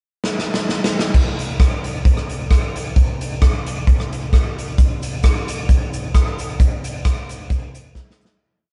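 A swinging big-band drum kit, punchy in the kick and up front with a side-stick backbeat, drives this short, upbeat and bouncy ska piece, opening with a fill from 0.2 seconds before a very quiet, grainy cabasa adds eighths from 4.8 seconds; the live-room sound with light reverb then fades out from 6.6 seconds, and a final fill closes at 8.4 seconds.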